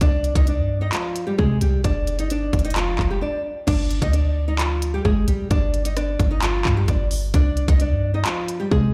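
This eerie, menacing trap cut opens at 0.0 seconds with a fingerpicked nylon-string guitar melody, bass and drums all sounding together at 131 BPM in a half-time 4/4 feel. The classical-style acoustic guitar carries a tape echo and sits up front, moving over a Cm chord and then a rootless Ebmaj9/F. Beneath it, a clean, sine-like 808-style bass hits with a fast attack and a deep, boomy, dark decay. The electronic trap kit is also up front, combining a hard-clipped kick, crisp hi-hats, handclaps, rim clicks and a crash cymbal. A brief break at 3.2 seconds leads into a new section at 3.7 seconds that shifts to a G5 before returning to Cm, and the whole passage sounds as if played on a big sound system in a bare room.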